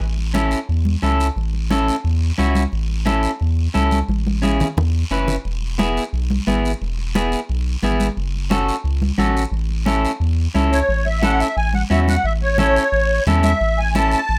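A round, deep analog bass and soft-handed, damped congas open this sunny, danceable cumbia at 176 BPM in A major, joined almost at once by a slightly broken-up picked electric guitar and a raspy guiro, with a drum fill between 4.1 and 5.5 seconds as the chords move from A through E and F#m back to A. At 10.7 seconds a reedy, shimmering musette accordion comes in up front to carry the melody into the second section. Light reverb sits over a rough home-demo mix, cut from a longer piece.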